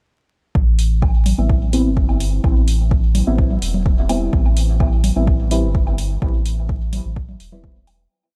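A short dub techno piece in A minor at 127 BPM opens at 0.6 s with a deep, round sine sub bass and an overdriven, up-front electronic kick holding a four-on-the-floor pulse, the bass carrying a dub-style line with sidechain pumping. An overdriven electronic open hi-hat joins almost at once, and soon after, low woodblock and conga sit in the background of a large room, bathed in dub echo and pumping with the sidechain. From 1.4 s, sparse, dark chord stabs built from detuned triangle, sawtooth and sine tones move one Am9 shape in parallel, colored by chorus, phaser, a moving notch and dub echo, while a filter sweep runs across the stab sound. The mood is cavernous and meditative, with light reverb and vinyl crackle adding a grainy patina throughout. A fade-out begins at 5.6 s and carries the groove to its close near 8.1 s.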